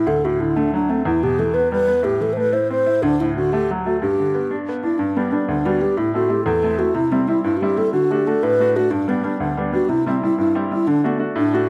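An airy, hollow alto flute carries the melody up front, its tongued notes shaded with vibrato, over a bright baby grand piano whose brilliant, short-sustained chords keep pace beneath it throughout. This rollicking Celtic folk tune moves at 122 BPM in a straight 6/8 in G major, shifting to a second section at 5.0 seconds as the harmony cycles through D, Em, Am, C and G. Close, detailed microphones capture both instruments within a moderate recital hall reverb in this short cut from a longer piece.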